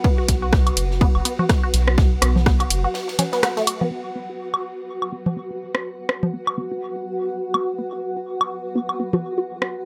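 A squelchy, resonant blip pluck riff opens this quirky, hypnotic minimal techno passage at 124 BPM in 4/4, with a swung sixteenth feel. Beneath it sit an overdriven, punchy electronic kick, a dry acoustic cocktail kit with dark ride cymbal and high-tuned snare, and a cloudy granular pad that drifts and blurs on a B5 chord. A round, deep analog bass and an overdriven drum machine with hi-hat and rim click come in almost at once, while electronic woodblock, congas and rim click, soaked in dub echo, join at 0.7 seconds. The detuned pluck carries phaser, delay and a cassette-tape tint, and sidechain pumping runs through it, the pad, the bass and the cymbals. A break at 2.9 seconds leads into a band accent, and from 3.9 seconds a filter sweep moves over the synth arpeggio as the pluck, the evolving pad and the echoing percussion carry on in a light reverb.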